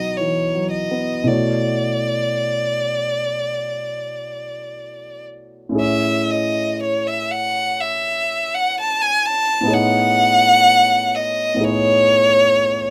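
A rich, focused violin sings the melody with vibrato, close and up front, over a concert grand piano whose deep bass anchors the accompaniment. This dreamy, pastoral impressionist duo drifts in rubato 4/4 at about 51-64 BPM in A lydian, with light reverb around the pair. At 5.8 seconds the harmony settles onto Amaj7 as a new section begins, then the short excerpt, cut from a longer piece, closes on B13/A.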